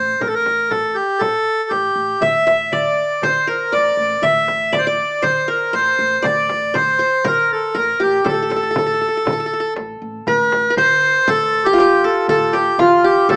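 A reedy, up-front accordion carries the melody over a woody, pizzicato upright bass from the start, joined almost at once by a small, bright frame drum played with soft hands, in this hypnotic, soulful Arabic maqam ensemble piece at 119 BPM in 4/4, cut from a longer work. At 2.2 s a bright-edged qanun with triple strings enters on a second line alongside a clay-shelled darbuka sitting in the background, and at 10.3 s the music shifts from maqam kurd to maqam bayati on A. The rough home-demo mix has a small-speaker sound and a wet studio reverb.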